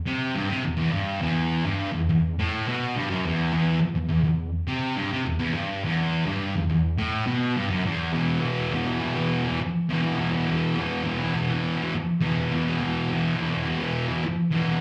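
A thick, bright fuzz guitar opens this menacing, gritty rock fragment, played alone with a pick in the low register, double-tracked and up front, with distortion and a slapback echo. At 8.1 s the part moves into a second section built on an E5 chord, and the guitar carries on until 14.8 s. The sound is that of a live club gig heard through the venue's PA, with only a touch of room reverb.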